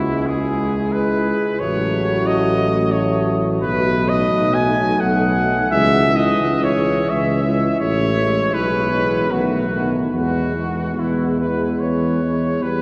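A clear trumpet section carries the melody up front, its soft attack and light vibrato giving this tender, serene hymn-like brass band piece a gentle glow. Set in a flowing triple metre with a rubato feel, the music breathes freely as the harmony moves from minor shadings toward a settled major close near 10.1 seconds. Beneath the trumpets, a mellow, close-miked French horn section sings a very quiet second line, while a bright trombone section sits tight in the background and a single trombone with a smooth top adds soft inner support. A solo tuba anchors the bass, sounding distant and roomy yet still prominent. A long, wet cathedral reverb surrounds the ensemble in a church-like space, lending this short classical excerpt a spacious, devotional calm.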